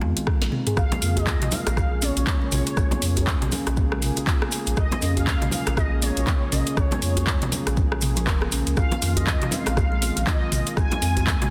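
A swung, driving groove anchors this earthy afro house excerpt: a deep electronic kick and an afro-pop kit of sharp snare, metallic hats, handclaps, rim clicks and toms sit in a small room, while bright congas, a cracking djembe and grainy maracas fill the background. A round sine sub bass with tube saturation and a smooth, detuned sawtooth pad pump under sidechain over Fm7 and Bbm7 chords, and a woody, ringing kalimba weaves arpeggios through dub echo. After a short drum fill from 0.4 seconds, the drop lands at 0.8 seconds, where an expressive, dark synth lead with vibrato, ring modulation and ensemble chorus carries the melody up high in a dense, heavily limited mix.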